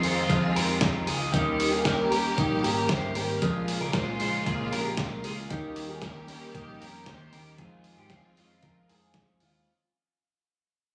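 A slightly broken-up electric guitar sits up front, playing arpeggios through phaser and digital delay, and leads this youthful, breezy jangly indie pop excerpt at 115 BPM in 4/4. Beneath it, a pitched-down, muffled sampler-style drum kit with a thumpy kick, a dark, foam-muted picked bass and a lush bowed string section holding sustained chords move through Fm7, Eb7 and Bbm7. A full-bodied jumbo acoustic guitar joins with fingerpicked accompaniment at 1.3 s, and the whole fragment, captured on a phone in a moderately ambient room with studio reverb and compression, fades out across its length.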